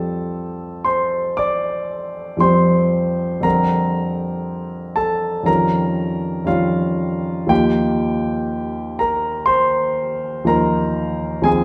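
Bathed in the wet reverb of a recital hall, this hazy, dreamy excerpt of impressionist classical solo piano drifts in rubato at around 57-63 BPM, with a clear, intimate, up-front concert grand, its action noise audible, its bass deep and its range spanning Eb2 to D6, as it moves from Fadd9 through C9sus4/F and Eb9/F to Ebadd9 over 11.6 seconds.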